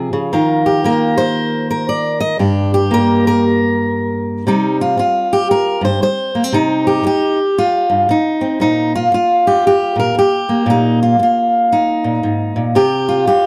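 A fingerpicked steel-string acoustic guitar, up front with an auditorium-like body and light reverb, carries this melancholic, reflective solo folk excerpt in a swung 4/4, moving from Ebsus2 and Gm to Cm, a chordless stretch at 8.6 seconds, then Bbsus4 and a closing C5 chord.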